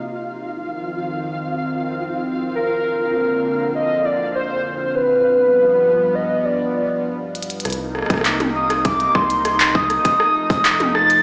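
A straight 4/4 pulse at 100 BPM arrives only at 7.3 seconds, when an overdriven glitchy drum kit of clicky hats, handclaps, rim click and toms enters, soon followed by a round, deep analog bass and then a tight, overdriven electronic kick, in this melancholic IDM excerpt in C dorian, where from the start a warbling, nostalgic lead with chorus, tremolo and digital delay sings up front over a smooth, detuned analog pad and a flickering, grainy texture that stops at 7.1 seconds, the whole mix ringing in a stone-room echo chamber with a small-speaker sound.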